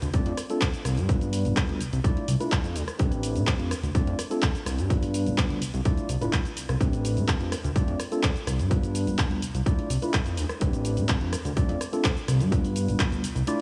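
Sensual and funky, this filtered disco house clip moves at 126 BPM in a straight 4/4, cycling through F6, G7, Dm9 and Am11 from start to finish. An overdriven, up-front electronic kick anchors the groove, while a fat, detuned sawtooth analog bass with a filter sweep pumps against it, and an analog drum machine adds cabasa, handclaps, hi-hat and rim click that breathe with the same sidechain pumping. A bright, clean tine electric piano carries the chords through a phaser, set in light digital reverb, and the clip is cut from a longer piece.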